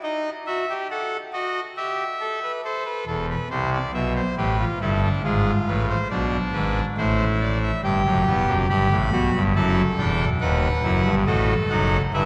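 A classical, baroque-style four-part fugue for solo pipe organ in A minor, this solemn, serious fragment moves at a stately 69 BPM in 3/4, tuned to A4 = 435 Hz and cut from a longer piece. The organ's trumpet stop sounds brassy and bright with a distinct chiff, sitting up front in a baroque voicing that spans from the deep pedal register to high treble. Its harmony passes through diminished and half-diminished colours, returning to A minor before settling on a diminished chord at 10.4 seconds, all set in a wet church reverb with a vinyl crackle.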